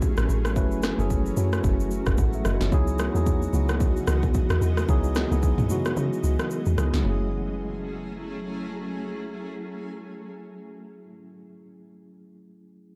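Amapiano with a late-night, hypnotic mood, this excerpt sets a mellow tine electric piano over a blurred, pumping granular cloud pad and a deep, round log drum bass, while an overdriven deep house drum kit with a punchy snare and very quiet, high-tuned congas fall away after the kick mutes at 6.0 seconds, the drums stopping at 7.0 seconds, all within a dark production.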